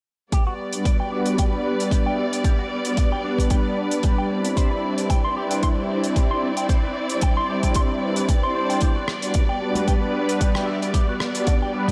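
Nu-disco at 113 BPM in G major with a light 16th-note swing, sunny and feel-good, where a punchy, tape-warm electronic kick sits up front beneath a dry, damped 70s kit of hi-hat and rim click, a lush bowed string section holds sustained chords with sidechain pumping, a twangy, clean envelope-filtered electric guitar plays a riff through chorus and delay, and a detuned sawtooth analog pad with tremolo and a filter sweep fills in from 0.7 s. The harmony moves from Gmaj7 to Cmaj9 and back to Gmaj7, and close, hard-handed congas join at 9.8 s, the mix soaked in a dreamy hall reverb.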